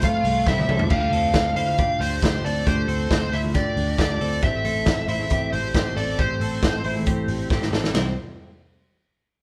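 Jangly indie pop with a bright, breezy mood, this excerpt from a longer piece moves at 136 BPM in a straight 4/4. A smooth, overdriven lead guitar carries the melody up front, while a twelve-string electric guitar adds clean, compressed, twangy arpeggios and a full-bodied jumbo acoustic guitar picks its accompaniment in the background. Underneath, a vintage foam-muted electric bass gives a dark, round low end against a gritty, saturated garage drum kit with a punchy kick, a medium-tuned snare and dark cymbals. A very quiet bowed violin section, bright and intense with light vibrato, sounds a brief second line before dropping out at 0.9 seconds. The harmony moves from F/C through Dm and Am before settling on C, and a drum fill at 7.5 seconds leads into the closing passage. The whole band plays live together in a stone room with moderate reverb, and the kit has a pumping room sound.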